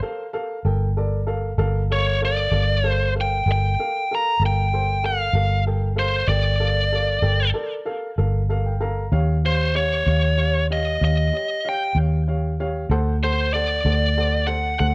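A biting, overdriven lead guitar carries the melody up front from 1.9 seconds in this smoky, mournful slow blues in G minor at 64 BPM in 12/8, over a round, foam-muted vintage electric bass and a dark, woody upright piano with plate reverb that adds a brief fill at 8.2 seconds, as the chords move from Gm7 to Eb7 and D7 in this cut from a longer piece.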